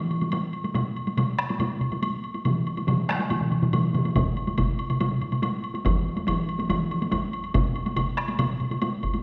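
A distant solo taiko struck with hard sticks in a large room opens this driving, ceremonial Japanese traditional taiko excerpt at 141 BPM in a straight 4/4. It is soon joined by a close, woody woodblock and three taiko ensembles entering at 0.2, 0.7 and 4.2 seconds: a vintage, band-limited, up-front ensemble on hard sticks, a close, dry hard-stick ensemble, and an up-front ensemble wielding heavy sticks in a small room. The solo drums drop away at 7.1 seconds, all set in a recital-hall reverb on worn cassette tape with warbly pitch drift.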